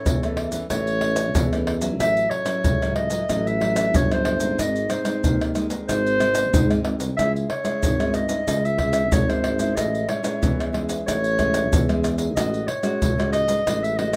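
A mellow clarinet carries the melody over fingerpicked nylon-string guitar tucked in the background, opening a lively, playful samba-choro passage at 93 BPM in 4/4, cut from a longer piece. A dark, close-miked tuba holds the bass, while maracas, a tight surdo, pandeiro and tamborim struck with hard hands sit up front in a small-room sound. The roomy clarinet leads through chords moving from A and F#m7/A to G#, C#m and Amaj7, all in a moderate studio reverb.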